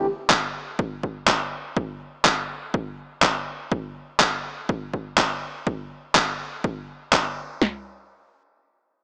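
A small-speaker sound with a moderate plate reverb frames this sunny, feel-good slice of filtered disco house, cut from a longer piece and moving at 123 BPM in 4/4 with a light 16th-note swing. Up front, gritty, overdriven sampler-style handclaps, compressed and re-recorded in a small room, run from 0.3 to 7.2 seconds, with sidechain pumping on the hats and percussion. Alongside them, also up front, a dry, punchy analog drum machine drives kick, snare and toms from 0.3 until 7.7 seconds, as a brief closing section arrives at 7.6 seconds.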